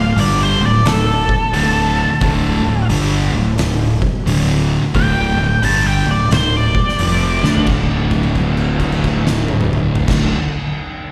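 Stoner and doom metal with an ominous, brooding swing, heard as a live gig through the venue's PA in a small, reverberant room, where a dark, wah-soaked octave-fuzz lead guitar solos over the riff of a compressed fuzz guitar and a very quiet thick fuzz guitar, with a growly overdriven fingered bass and an oversized low-tuned drum kit with a fat snare, punchy kick and dusky cymbals; a drum fill at 7.3 seconds ends the solo at 7.7 seconds, and a held note rings on until 10.0 seconds.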